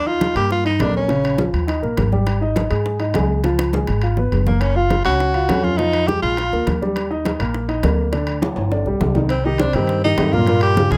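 Danceable and sunny, this Afro-Cuban jazz excerpt moves at a brisk 205 BPM in Eb major, with a clear, up-front tenor saxophone soloing in short, scooped phrases with light vibrato that return at 4.5 and 9.3 seconds. Beneath it, a woody, dark pizzicato upright bass sits up front, while a natural-sounding grand piano fills out the harmony as the chords move through colours such as Gbmaj7, Dmadd11 and Cm7. Soft-handed congas and round, low-tuned, hard-handed bongos sit in the background, distant metal-shell timbales ring out, and drum fills arrive around 8.4 seconds in a close, dry and detailed recording.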